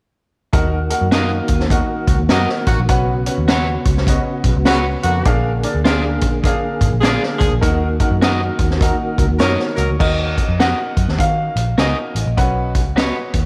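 Swung eighths in 4/4 drive this passionate, urgent slice of uptempo 1960s-style soul, where a punchy, up-front vintage drum kit and a dark, foam-muted picked bass anchor a bright, woody upright piano, a mellow tonewheel organ turning through a slow rotary speaker until 10.0 s, twangy tremolo guitar stabs on the edge of break-up and a warm jazz-style horn section in the background, before a clear, intimate baby grand piano carries the tape-echoed melody from 9.4 s to 12.2 s in a small, lightly reverberant room.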